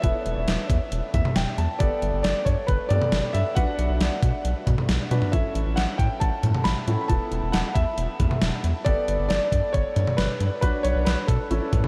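Soaked in a huge ambient reverb, this dreamy, nostalgic yet upbeat synth-pop excerpt at 136 BPM sets a clear concert grand piano melody, trailed by diffuse delay and carrying audible action noise, over a polished baby grand accompaniment, with a grand piano fill from 0.9 to 1.8 seconds, a rubbery, hollow square bass with a filter pluck, and an up-front, thumpy 80s digital drum machine whose snare rings with gated reverb, all cycling through Esus4, Gadd9, Bm and A.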